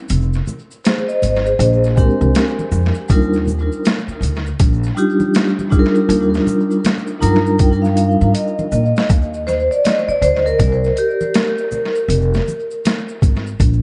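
A gritty, overdriven boom bap drum kit with a thumpy kick, high-tuned snare and tape echo opens this jazz-hop excerpt at 80 BPM in Eb major, alongside a woody, dark pizzicato upright bass up front and maracas and congas sitting in the background. A mellow soft-mallet vibraphone with fast motor vibrato joins at 0.8 seconds over Fm, Bb13 and Ebmaj9, and after vibraphone and drum fills it takes a solo at 9.1 seconds over Cmadd9 and Gmadd11/C. The swung, cool yet warm mix is echo-heavy, with light reverb, vinyl crackle and a dulled top end.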